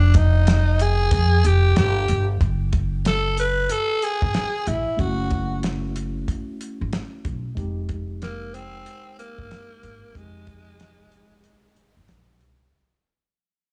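A dry, gritty recording with small-room ambience carries this smoky, nocturnal jazz-hop excerpt at 93 BPM in 4/4 with a swung sixteenth-note feel, fading out across its length and moving from Fm9 to F#m7 and back. Up front, a raspy, growling tenor saxophone takes the solo with vibrato and scooped notes over a woody pizzicato upright bass and a cloth-damped, thuddy drum kit whose fat snare, tight kick and hi-hat carry vintage 12-bit sampler grit and a rolled-off top. A mellow, clean tine electric piano enters softly at 5.0 seconds to add accompaniment.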